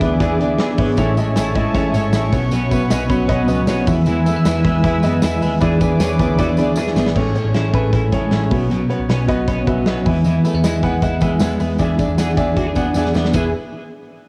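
This home recording on cassette carries a light reverb and a nostalgic, bright glow in a fragment of jangly indie pop in straight 4/4. Up front, a clean, twangy twelve-string electric guitar plays arpeggios through harmonic tremolo and tape echo. Beneath it sit a picked dreadnought acoustic guitar in the background and a woody upright piano with audible action noise. A smooth sawtooth analog pad with chorus and a slow attack holds sustained chords until 7.1 seconds. A round, foam-muted vintage electric bass and a big rock drum kit with a punchy kick, medium-tuned snare, hi-hat, ride and crash carry the groove, with drum fills closing each of its two sections, while a jingly tambourine sits close and dry in the background, dropping out for a few seconds in the middle as the chords cycle from E7 through Amaj7 and Bsus2 back to E.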